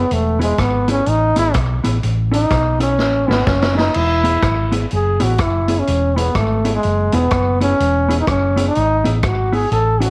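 Vinyl crackle and a moderate spring reverb give this upbeat, bouncy ska excerpt a vintage patina, with a swung 125 BPM groove in E major moving from E to A and back to E. An up-front, clear trombone carries the solo melody with vibrato and a smooth top, while a round, hollow-body fingered electric bass holds the low end and a mellow, clean, compressed electric guitar adds dark accompaniment. A vintage drum kit with punchy kick, rim clicks and dusky cymbals sits behind them in slapback echo and plays a fill between 3.0 and 4.0 seconds.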